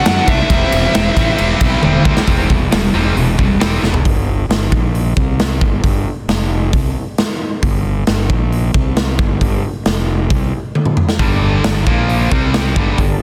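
Dense and heavily limited with a light reverb, this swaggering, energetic hard rock excerpt drives along at 134 BPM in a straight 4/4. A big acoustic drum kit sits up front in a natural, roomy sound, with bright cymbals, a punchy kick, a medium-tuned snare and toms, and fills punctuate the changes. Beside it, a round, dark, fuzz-soaked fingered bass carries an overdriven growl. At the opening, a smooth overdriven lead guitar sings a short melody through plate reverb and digital delay until 2.0 seconds. Beneath it, a very quiet, double-tracked high-gain guitar riffs alongside a gritty, thick tonewheel organ holding sustained chords through its slow rotary speaker. Two more distorted guitars sit in the background, one scooped and one tight, churning a low riff until 4.0 seconds, after which bass and drums drive on alone until the organ and both background guitars return at 11.2 seconds.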